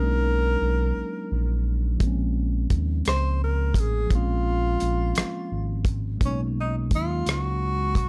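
A soft-attack tenor saxophone with vibrato carries a jazz-style solo melody over a mellow, clean tine electric piano and a smooth sawtooth-and-square synth bass that glides with portamento, before a tight, rolled-off acoustic soul drum kit joins at 2.0 s with hi-hat, kick drum and rim click, shaping a sultry, late-night slow R&B groove in 6/8 at 57 BPM in Bb minor that moves from Bmaj13 to Bbm9 and back under light reverb in this warm, dark-toned excerpt.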